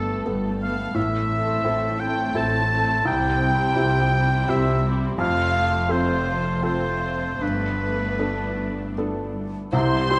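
Moving at a rubato 76-87 BPM in 3/4, this tender, moving cinematic film-score excerpt features muted violins carrying the veiled melody in the background while a clear, up-front oboe and a second muted violin line sing above a felt-muted upright piano with audible action noise and a faint, ringing harp. Dark con sordino violas, cellos and double basses fill out the harmony and bass through a Gadd9, Am, C and F progression, bathed in a wet scoring-stage reverb. At 9.7 s an airy, bright silver flute enters with a brief line on C5 as a warm French horn section adds sustained chords.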